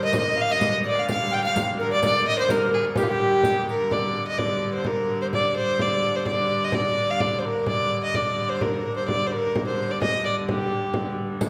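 A dark, woody fiddle with light vibrato and portamento leads this mysterious, driving medieval dance excerpt over a clear, nasal hurdy-gurdy drone and a small, bright frame drum, while a breathy recorder, a ringing harp and a riq with bright jingles sound from the start and drop away within the opening seconds, the riq returning briefly at the very end, all set in the wet reverb of a recital hall.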